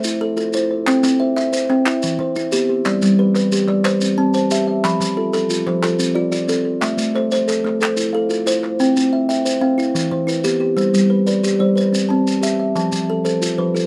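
A pair of up-front kalimbas, woody and thumb-plucked on solid boards, weave interlocking arpeggios through this rippling southern African traditional cycle in 12/8, one short, the other softer, darker and ringing. Grainy maracas sit distant in a large room throughout, while a hollow, dry group handclap joins from 0.9 to 8.7 seconds. Cut from a longer piece, the passage circles a repeating progression from Am through C, Em and G to F, captured with close, detailed microphones and a light reverb.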